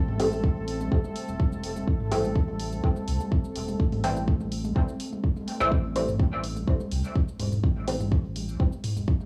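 A straight 4/4 dub techno groove rests on an up-front electronic kick, with dark hi-hat and shaker layers and analog toms that sit in the background under studio reverb and dub echo. A round, tube-saturated sub bass and a muted, detuned sawtooth chord stab, filter-swept and trailing dub echo, pump against the beat, while a moody, full-bodied pad holds an Am7 chord until 5.7 s. The nocturnal, cavernous fragment carries cassette-tape colour and small-room ambience.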